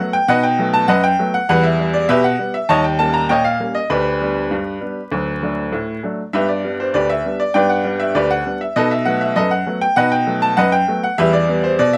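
Straight 2/4 time at 99 BPM drives this playful, lively ragtime piece in G major, cut from a longer work, where a solo upright piano, clear and woody with long sustain and placed up front, ranges from D2 to Bb5 through chords such as B7, Em, Eb7 and G/D, captured by close, detailed microphones with light reverb and a layer of vinyl crackle.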